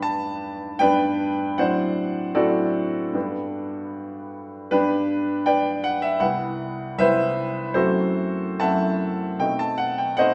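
A concert grand piano opens alone on a G chord, its sound clear and up front, with a deep bass that reaches down to C2 and a treble that extends as high as B5. This is a romantic character piece for solo piano in 4/4, played with a free, rubato feel and a bittersweet, passionate mood. The harmony moves from G through D7/A and back to G, then turns toward Cmaj7 at 6.2 seconds, F#m7b5, and finally B7b9 at 9.4 seconds. A wet recital hall reverb gives the instrument an open sense of space, and the piano is tuned slightly above standard pitch, to A4 = 441 Hz. The recording is a 10.3-second fragment cut from a longer piece.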